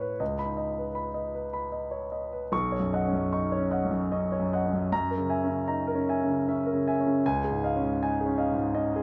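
Close, detailed microphones catch the concert grand up front, while a moderate recital-hall reverb lends the hall a soft halo. This is an impressionist classical piece for solo piano, hazy and dreamy in mood, moving in a gently flexible three-beat metre with a free rubato feel. The instrument has a warm, natural tone with a deep bass, and its span reaches from B1 in the low register up to C#6. Open, colourful harmonies drift from C#sus2 into Badd9 at 2.5 seconds, where the music opens into a new passage, then through F#9 to C#add9 at 7.2 seconds. Cut from a longer work, the fragment feels suspended mid-thought, lasting only about 9.0 seconds.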